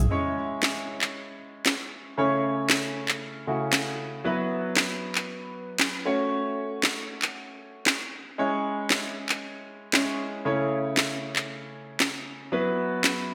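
Driving and energetic, this dance-pop excerpt sets a clear, polished concert grand piano with deep bass and short sustain, bathed in lush chorus, against an up-front, cracking electronic snare layered with handclaps that enters at 0.6 seconds, all moving through C#m, A/C#, Bsus4 and F#m within a bright 1980s-style digital production and a wet hall reverb.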